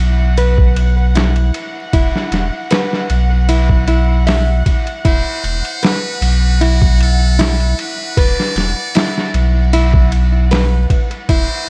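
Under a dry, crackling vinyl surface, this hypnotic, melancholic trip hop excerpt sets a deep, round sub bass and a tense, warbling string-like drone beneath bright fingerpicked nylon-string guitar arpeggios with delay and a gritty, pitched-down boom bap drum kit that arrive at 0.4 seconds, before a buzzy, close-miked trumpet with metal mute takes a forceful solo melody at 5.1 seconds through lo-fi sampler grit and dub echo.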